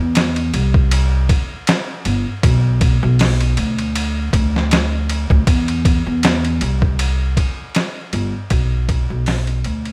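Brooding and hypnotic, this trip hop excerpt moves at 79 BPM in 4/4 with a light 16th-note swing. An up-front upright bass, woody and plucked with steel strings, holds the low end from the start, joined at 0.2 seconds by a gritty, pitched-down sampler-style drum kit of thumpy kick, medium-tuned snare, hi-hat and ride, overdriven and compressed with studio reverb. The sound is dry overall with a bed of vinyl crackle, and the piece fades out from 6.5 seconds to its end at 9.9.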